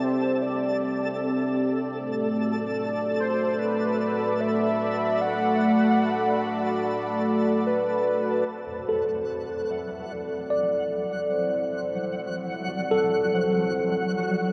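A mellow analog pad sits up front throughout this peaceful ambient excerpt at 74 BPM in 4/4, its sawtooth and triangle tones with a sub octave blooming through a slow attack into sustained, chorused chords. Above it, a velvety synth lead carries the melody with detuned unison, vibrato and chorus, colored by cassette tape and delay. A twinkling granular texture adds sparkling octave-up shimmer and fades out over the first 8.5 seconds. The pad fades in from 8.5 seconds as the harmony moves from Bm7 back to C69. At 8.9 seconds a clean tine electric piano enters with arpeggios, sounding through a combo amp with delay, while a huge ambient reverb and dark, warm production give the piece a wet, unhurried haze.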